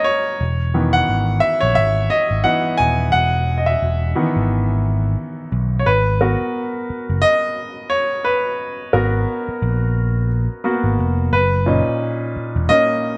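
A gently swung sixteenth-note feel in 4/4 carries this lush, romantic 1970s-style soul fragment, cut from a longer piece. A clear, polished baby grand piano sits up front and takes the spotlight throughout, opening alone until an amped, electric picked bass joins, also up front, at 0.4 seconds. The chords move from Emaj13 to G#m9 at 5.9 seconds and Bmaj9, all in a small room with light reverb.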